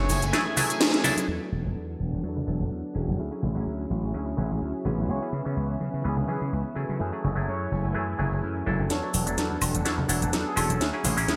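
A nasal, overdriven clav, a lush string machine with slow-attack chords, a twangy clean electric guitar riff, a gritty, punchy slap bass and a brief entry from a vintage trumpet section open this nostalgic, groovy filtered disco house excerpt at 126 BPM on F#m9. They are joined by cracking overdriven house drums with metallic hats, cabasa and woodblock, and by soft background congas and tambourine. The drums stop at 1.3 seconds, the tight, lightly vibrato-laden trumpets return with the melody at 5.1 seconds, and at 8.9 seconds the drums come back with a fill, a build-up and a filter sweep, all set in a bright 1980s-style production with a lush hall reverb.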